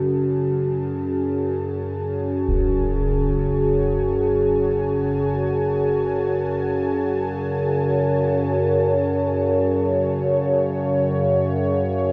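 Soaked in a huge, cavernous reverb and the grain of cassette tape, this dark ambient drone piece, cut from a longer work, sets an up-front, resonant drone with moving overtones against a detuned, full-bodied analog pad that fades in beneath it, while a close, muffled concert bass drum sounds once at 2.5 seconds.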